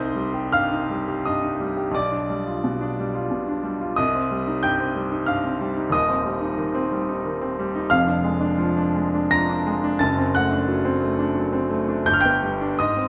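Bittersweet and stormy, this romantic character piece for solo piano moves in a rubato 3/4 at 74-93 BPM in C minor, an excerpt cut from a longer work. The bright grand piano sits up front, brilliant and intimate, with audible action noise, polished tone and long sustain across a range from Eb1 to Bb6. A wet recital hall reverb and a dark, warm production surround the playing as the harmony passes from Cm through G7/B and a D diminished chord over F in the bass, arriving on G at 12.1 seconds.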